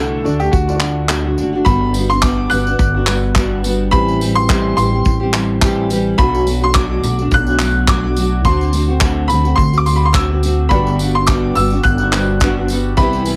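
Acoustic pop with a carefree, heartfelt mood, moving at 106 BPM in 4/4 with a light sixteenth-note swing in G major, cut from a longer piece. A bright upright piano carries the melody with a brilliant, woody tone and short sustain, while a felt-muted upright piano sits softly in the background, heard only until 1.7 seconds and again from 10.7 seconds. A double-tracked nylon-string guitar is fingerpicked up front in a classical style, joined by a pizzicato upright bass with steel strings and a woody body. An unplugged drum kit enters at 0.5 seconds with a punchy kick, bundle sticks, handclaps and tambourine, and a separate jingly, saturated tambourine sits in the background from 0.3 seconds. The harmony moves from D to Gmaj7, Am7, Bm7 and D7 before returning to Gmaj7, and the dry mix has a heavily compressed, radio-like sound.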